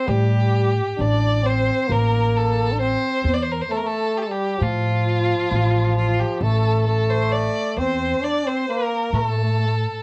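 A straight 10/8 pulse at 132 BPM in eighths drives this longing, hypnotic Turkish makam ensemble piece in A makam kurdi, cut from a longer work. A single bowed violin carries the melody with smooth, even vibrato, distant in tone yet up front, while a brilliant, punchy trombone plays a present second line with light vibrato in a pop style, both parts coloured by cassette tape. Underneath, a woody, dark upright bass with steel strings plays pizzicato up front, all set in a moderate booth ambience on a home cassette recording.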